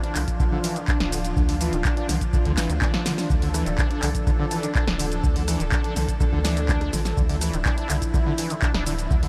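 A straight electronic kick drives this trippy acid house fragment, where a punchy analog drum machine with handclaps, hi-hat, rim click, shaker, snare and toms joins a squelchy, resonant overdriven acid bass riff, a round, dark analog bass, and a smooth, detuned analog pad holding sustained chords on D minor, the pad and both basses pumping under a dreamy, reverb-soaked mix, while a very quiet, breathy alto saxophone holds a single note from 4.6 to 6.9 seconds.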